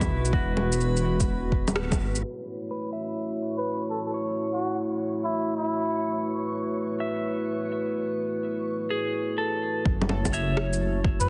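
Wistful and ghostly, this future garage piece moves at 126 BPM with a swung 4/4 feel in F# minor. A gritty, clean-picked electric guitar with tape echo and a dark, chorused analog pad pump against a rumbling detuned saw bass, overdriven electronic bongos, shaker and rim click, and a deep overdriven kick, while a reversed, dreamy texture drifts in the background. The bass and drums drop out around 2 s under a filter sweep, leaving room for a breathy cup-muted trumpet with digital delay from 3.6 s, before the groove returns at 9.9 s, all wrapped in hall reverb and a heavily compressed, radio-like sound.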